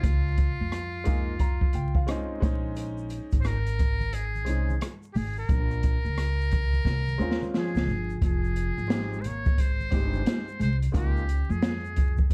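A breathy, buzzy metal-muted trumpet with slapback echo carries the melody from the start over a smooth vintage grand piano, woody pizzicato upright bass and an up-front jazz drum kit with a boomy kick in this cool, mellow jazz-hop excerpt at 88 BPM in Bb dorian with swung 16ths, the piano adding a fill at 0.7 seconds, very quiet tube shaker and congas entering at 2.8 seconds and a clean, fingered electric guitar joining at 7.6 seconds, set in a dark, dry production with vinyl crackle.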